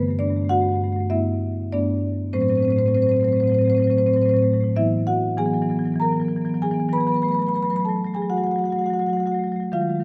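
A solo marimba played with soft mallets carries this contemporary classical piece, its rosewood bars giving a woody, mellow, rounded tone that sits up front in the sound. The mood is flowing and hypnotic, moving at 98 BPM in 4/4 with a rubato feel, and the instrument is tuned slightly below standard pitch, with A4 at 435 Hz. Across its span from G2 to B5, the marimba moves through a G6/9 chord, then Am6 at 2.3 seconds, Eadd9 at 4.8 seconds and F#m at 7.2 seconds. A moderate concert hall reverb with a 2.3-second decay surrounds the single instrument with a spacious, natural ambience. This ten-second passage is cut from a longer piece.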